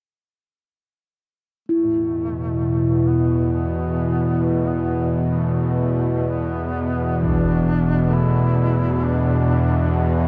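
This dark ambient drone passage, cut from a longer piece, opens at 1.7 seconds as a duduk and a bronze singing bowl enter together over an E5 chord, the duduk fading in with a folk-style solo line full of vibrato and scooped notes. The metallic singing bowl rings on a single meditative tone, mellow and soft from its felt mallet, with slow beating and the boxy character of a small room. A dark concert grand piano adds very quiet, deep-bass arpeggios from 1.8 seconds, and at 2.0 seconds a tense, string-like bowed drone rises up front with a slow attack and long release. That drone is the loudest part: a sawtooth-edged, detuned unison with a noise layer, ring modulation and vibrato, bright and sustained in its own reverb. At 7.2 seconds a huge, filtered impact strikes briefly, and the whole ominous, vast scene sits in a deep ambient reverb with a dulled top end, while echoes trail behind the duduk.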